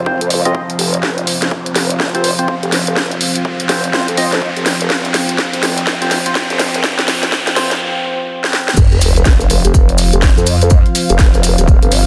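A gritty, swaggering bass house build-up opens on a dark, detuned analog pad under a filter sweep, a nasal, saturated vowel-sweep wobble bass, a warbly, lo-fi tape-like pad and a riser, all set against a punchy electronic kick and an up-front house kit with a cracking snare, hi-hat, crash cymbal and swung 16ths. Hollow, organ-like stabs with ring modulation and dub echo sit in the background, drum fills push toward a break at 7.8 seconds, and the pads and bass pump with sidechain throughout. The drop lands at 8.8 seconds with a sub-drop impact and grainy, mellow maracas, all in a dense, heavily limited modern mix with light reverb.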